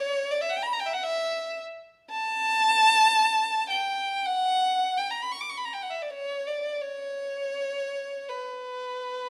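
The rhythm moves freely in a rubato 4/4, with the pulse stretching and settling as the phrases unfold. This classical fragment, cut from a longer piece, features a single bowed violin playing unaccompanied from 0.0 to 9.3 seconds in a mournful, meditative mood. The violin's tone is rich and expressive, shaped by vibrato, soft attacks and gliding portamento as it moves between B4 and D6. The instrument sits up front, surrounded by a moderate stone-room reverb that lends the lone line a sense of resonant space. The effect is intimate and sorrowful, like a quiet reflection voiced by one player.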